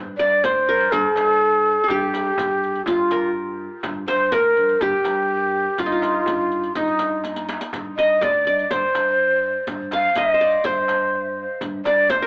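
A bright-edged, plucked qanun and a woody pizzicato upright bass open this soulful, longing Arabic maqam ensemble piece in G bayati, moving at a straight 123 BPM in 4/4. At 0.2 seconds a breathy, close-miked ney takes the melody up front with a tape echo, while a crisp metal-shell darbuka and a riq with dark jingles sit in the background and a very quiet, deep frame drum sounds close, with a drum fill at 7.2 seconds. The whole cut carries a light reverb and a telephone-like sound, and it is taken from a longer piece.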